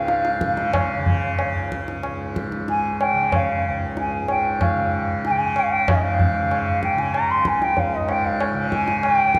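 A pure, bamboo-toned bansuri sings a vibrato-laden, tongued melody up front over a softly plucked, buzzing and shimmering tanpura drone and high-tuned, ringing, compressed tabla entering at 0.1 s, in this radiant, serene Hindustani classical excerpt that starts around 94 BPM in 4/4, gradually speeds up, shifts into a new section at 5.9 s, and is bathed in a long church reverb.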